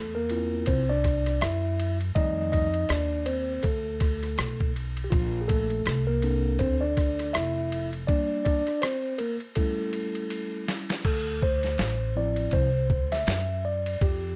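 Mellow and cool, this swung jazz-hop fragment sets a clean, up-front tine electric piano, which carries a solo throughout, over woody, dark pizzicato upright bass and a gritty, compressed, pitched-down boom bap sampler kit with a thumpy kick, entering at 0.3 seconds and breaking into a fill from 9.6 to 11.1 seconds, all steeped in light reverb and the warbling pitch drift of worn cassette tape.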